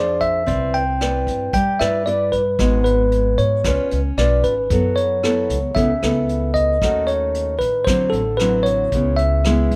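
Sophisticated and breezy, this bossa nova fragment places a bright, bell-like tine electric piano melody up front over thumb-plucked classical nylon-string guitar, woody pizzicato upright bass and a vintage brush drum kit with a tight kick and rolled-off top that joins at 0.2 s, all moving through rich chords from Cmaj9 to C#m7 in light reverb.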